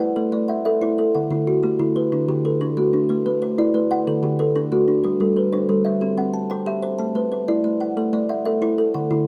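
In a straight 12/8 pulse, this short section of a longer southern African traditional piece sets two kalimbas playing arpeggios together from start to finish over a cycle of Am, D, G and C, building a hypnotic, trance-like mood. Both sit up front with a woody, hollow-box tone and soft, ringing fingertip plucks; one carries a vintage, band-limited colour, while the other sits a little quieter. Close, detailed microphones and light reverb keep the sound intimate.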